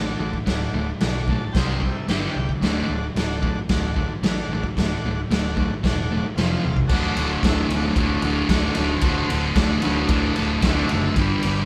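A double-tracked fuzz guitar riff leads this rowdy, raw garage rock excerpt in D mixolydian at 112 BPM, with a gritty, punchy drum kit entering at 0.3 seconds, growly foam-muted fingered bass, and a buzzy overdriven combo organ holding sustained chords with light vibrato and adding fills around 1.0 and 10.1 seconds, all captured as a band playing live in one room with light reverb.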